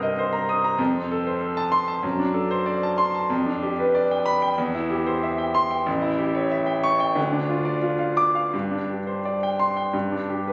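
Brilliant and heroic, this rubato classical virtuoso piano study in 4/4 at 83-99 BPM, cut from a longer piece, features a clear, intimate solo grand piano spanning A1 to Eb6 with long sustain, natural tone and audible action noise, placed up front in a moderate recital-hall reverb and captured on a phone in the room, as its harmony moves from Cm7 through D7/F#, G7/F and A7 to settle on Gsus4 and a bare G5 at 9.9 seconds.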